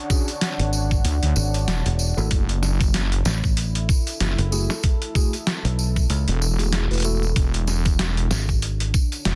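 A very quiet downlifter and a deep, moody, detuned ambient pad with chorus, reverb and sidechain pumping open this swaggering, gritty glitch hop excerpt in F# minor at 95 BPM with a swung 16th-note feel, as a mellow tine electric piano plays stabs through dub echo over E13 and F#m9 chords, a knocking, tape-warm kick and a jingly tambourine arrive alongside an overdriven, pitched-down sampler kit of hi-hat and snare, and a punchy, foam-muted fingered bass and a saturated sawtooth wobble bass with chorus join by 1.0 s in a dense, hard-limited master.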